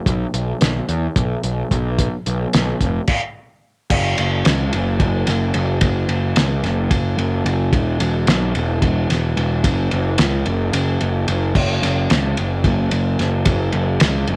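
A light reverb gives this psychedelic rock excerpt a small space. Its mood is mysterious and hypnotic, moving in 7/8 at 220 BPM counted in eighths with a straight feel, tuned to A4 = 436 Hz. A round, punchy fuzz bass played with a pick sits up front in its low register, beside a cloth-damped, thuddy lo-fi drum kit with a fat snare, tight kick and muffled, shadowy cymbals. Both parts break off together from 3.1 to 3.9 seconds before a new section begins.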